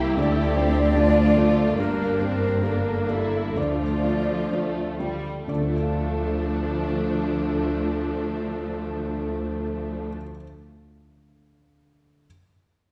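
In a rubato 4/4 that slows over the first 5.5 seconds at 62-76 BPM, this sorrowful, moving cinematic film-score fragment in D minor sets a focused, lush bowed violin melody with vibrato over a soft-attack second violin line, an airy hollow flute and a solo clarinet, while portamento violas, very quiet mellow French horn chords, smooth cellos and rich double basses sustain the harmony through Dm and Gmadd9 until 10.1 seconds, leaving a soft felt-muted upright piano alone in the background until 12.3 seconds, all heard from further back in a reverberant scoring stage.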